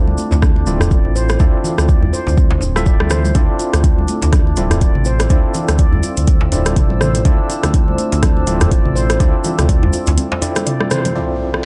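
A swung groove drives this spiritual afro house excerpt, built on a deep, overdriven electronic kick that sits up front and an overdriven afro-pop kit with metallic hats, rim clicks and toms. Soft-handed congas and a close, dry djembe sit in the background, joined by a grainy, saturated cabasa. A smooth sawtooth-and-triangle synth bass pumps against the kick beneath a gritty, barky tine electric piano that plays stabs through a combo amp with fast tremolo, a low-pass filter and tape echo. A ringing, meditative handpan spins arpeggios with its own echo and pumping, and at 5.1 seconds a moody, detuned analog pad with chorus fills in sustained Dm9 colour. A break opens at 10.2 seconds, a band accent lands, and an electronic impact hits at 11.2 seconds, all within a dark, intimate small-room sound.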